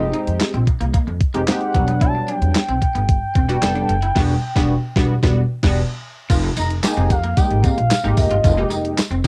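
A crisp 8-bit drum machine with a thumpy kick and handclaps drives this slick, funky early-eighties boogie funk excerpt, where a woody pizzicato upright bass anchors punchy, detuned polysynth comps over Fm9 and Em9, a twangy, slightly broken-up electric guitar riffs through lush chorus, a smooth gliding portamento lead sings with vibrato, the band hits an accent at 4.2 seconds, and a jingly background tambourine joins at 6.3 seconds as the harmony moves to Fm11, all with the dry, tape-softened character of a home cassette recording.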